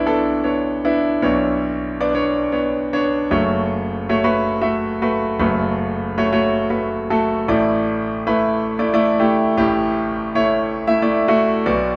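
Pop solo piano at 115 BPM with a light sixteenth-note swing, driving and earnest, as a clear concert grand with deep bass and short, polished sustain sits up front in a wet stone room, moving from Bmadd9 to F#m before shifting to a new section on Asus4 at 7.5 seconds in this brief excerpt cut from a longer piece.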